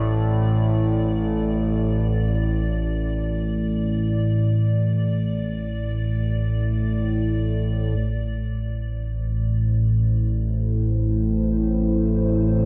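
Dark ambient drone in free time, cut from a longer piece, with an ominous, desolate mood. An up-front analog drone holds the low register throughout the full 12.7 seconds, its evolving, wave-folded sawtooth and pulse tones thickened by chorus and a slow attack with long release. Above it, an icy glass pad sits faintly on a single high D, crystalline and airy, with its own built-in reverb adding shimmer until it stops at 8.0 seconds. At that point the harmony moves from a suspended chord to A minor, and a dark analog pad fades in behind the drone, its detuned, ring-modulated square and sawtooth layers with a sub octave giving deep, moody sustained chords, while a filter sweep works on the drone. The mix is dreamy and soaked in a moderate plate reverb with a long tail.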